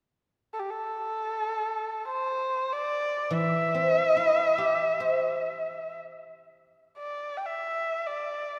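This Chinese traditional chamber piece, cut from a longer work, carries a pastoral yet festive mood as a single bowed erhu sings the melody up front with a dark, woody tone, soft attacks, vibrato and gliding portamento. From 3.3 to 6.7 seconds a guzheng joins in accompaniment, its fingerpicked strings ringing with a silvery, acoustic sheen close to the listener. A wet concert hall reverb gives the pair a long, spacious tail.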